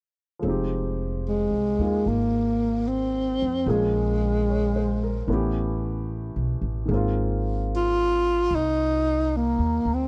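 A swung 4/4 lilt carries this melancholic, wistful jazz ballad fragment, where a woody, thumpy pizzicato upright bass and an intimate upright piano with audible action noise move through Fm9, Bbm7, A9 and Ab69 beneath a dark, breathy tenor saxophone that enters up front at 1.3 seconds with whispered subtone, vibrato and scooped notes, heard in a dry, close 1970s-style studio recording with small room ambience.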